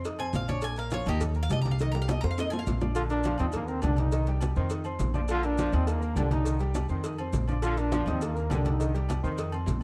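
A festive, sunny salsa excerpt in Bb major at a brisk 206 BPM, cycling through F5, Bb, Eb and Cm, opens with a brilliant, metallic Cuban tres solo over an intimate concert grand piano with audible action noise, an up-front, woody, growly upright bass, and background congas, cowbell and bongos, agogo bells and timbales, and grainy maracas, with a drum fill from 1.8 to 3.0 seconds. At 3.0 seconds a clear, punchy solo trombone with light vibrato takes the melody, backed by a tight trombone section in the background. The production is dark with light reverb.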